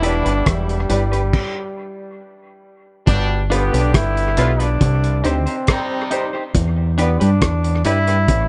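A slow, straight 4/4 roots reggae groove at 69 BPM anchors this short, sunny cut from a longer piece, with a cloth-damped, thuddy drum kit up front playing kick, rim click, hi-hat and crash, its muffled, gritty sound and dark cymbals trailed by dub echo. A deep, round dub bass sits just as close, while a dark, mellow electric guitar riff enters at 0.3 s, very quiet beneath it. A clear trombone carries the melody with light vibrato and scooped, punchy notes, sounding roomy and touched with tape echo, and a tight vintage horn section plays a second line until 6.3 s. In the background a hollow-body electric guitar adds clean, compressed accompaniment through spring reverb and tape echo, and a woody, boxy upright piano supplies stabs. The harmony moves from Em7 into a full stop between 1.3 and 3.1 s, then continues through G7 and Cm before returning to Em7, all inside a small room ambience with a rolled-off, lo-fi top end.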